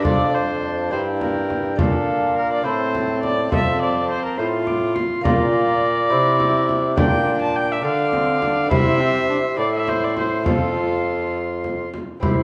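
A 6/8 pulse at 69 dotted-quarter beats per minute, played straight, carries this courtly yet rustic renaissance-style consort dance, cut from a longer piece. A clear oboe with light vibrato and a smooth top sings the melody in the high register, while an up-front viola with an airy bow and a nasal, gut-string tone plays a close second line beneath it. A second viola, reedy and period in style, fills the accompaniment in a narrow middle range beside a bright, delicate fingerpicked lute whose double strings include some octave-doubled pairs. A warm bassoon holds the bass, and a deep, distant frame drum sounds as if from a large room, all within a wet recital-hall reverb with a 1.4-second decay. The harmony moves through F, Gm, Bb and Am, returns to F, then passes through Bb, C, Gm/Bb, Dm, C and Am before settling on F at 10.5 seconds.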